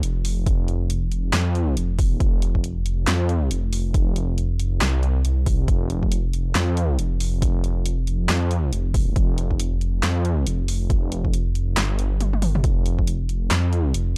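The sound is dry and gritty, with a hardware roughness and little room around it, in this short excerpt of deep dubstep with a meditative, dark mood. At 138 BPM in 4/4 with a half-time feel and 16th notes swung at 60%, the groove moves with a heavy, unhurried stride, tuned slightly low to A4 = 439 Hz. Up front sits a dark detuned saw bass, rumbling between F1 and F2 with a fast attack and sustained, beating tone, its sawtooth edge roughened by tube saturation over a sine-like depth. A punchy, layered electronic kick enters at 0.5 seconds, and a deep house drum kit fills out the rhythm with handclaps, hi-hat, toms and a fat snare. At 12.2 seconds the kick drops out briefly for a drum fill, then returns before it stops at 13.1 seconds.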